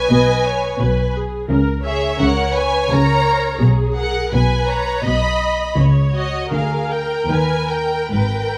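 Close, detailed microphones and a light reverb give this 8.6-second fragment of a slow romantic orchestral movement an intimate, clear sound. In G# minor and 3/4, it moves with rubato between 68 and 88 BPM, and its mood is elegiac and solemn. A violin section carries the melody high in its range with a focused, slightly distant tone, while a second violin section shapes an expressive inner line with a soft attack. Violas supply an even, steady accompaniment, and at 0.1 s the cellos and double basses enter together on the bass line, the cellos smooth and near-sounding, the basses lush and up front with a polished top. Every section plays bowed with vibrato as the harmony moves from G#m/B through C#5 and back, then turns through C#sus24 and Ddim to a closing D#.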